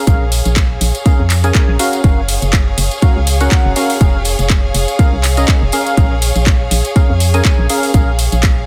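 A punchy, layered electronic kick sits up front in this energetic, soulful piano house excerpt at 122 BPM in Bb minor, joined by a dark, hollow FM bass with an organ-like bite and a house kit of handclaps and metallic hats, with a tambourine tucked into the background. A percussive organ stab riff with a noisy edge, analog chorus and dub echo pumps against the kick alongside a rich, focused chamber string section with vibrato. The swung groove moves through Bbm7, Gbmaj7 and Db6/F before returning to Bbm7 at 6.0 seconds, all inside a dense, heavily limited modern master.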